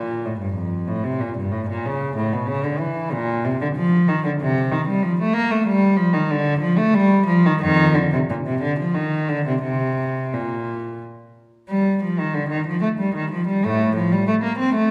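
A rich, reedy gut-string cello, bowed by one player in period style and set up front, carries this serene, radiant baroque-style suite movement for unaccompanied cello at 93 BPM in a flexible, rubato 3/4, ranging from F2 to C4 and moving into a new section at 11.7 s before the 14.9 s cut, all wrapped in a wet recital-hall reverb with lossy compression artefacts.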